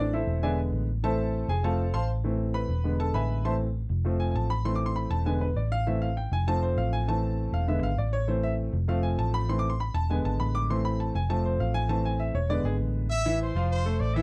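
A dry, close studio sound in a 1970s style, touched with light reverb, frames this passionate, danceable Latin excerpt at 199 BPM in A harmonic minor, cycling through E7, Am and F. A clear, present baby grand piano carries the accompaniment up front, with a dark, round, foam-muted vintage electric bass punching low beneath it. At 13.1 seconds a tight, bright trumpet section takes the melody with a soft attack and light vibrato.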